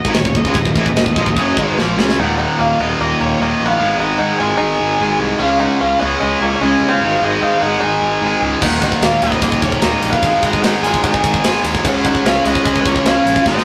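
Heavy metal with a relentless, heavy mood, this short excerpt pairs a high-gain lead guitar melody with two bright distorted rhythm guitars, one up front and one tucked behind, over a growly fuzz bass and a tight, rolled-off drum kit that drops out after a fill at 2.2 seconds and returns at 8.6 seconds, while a twangy fingerpicked banjo enters at 2.2 seconds as a background second line in a rough, tube-saturated rehearsal-room sound.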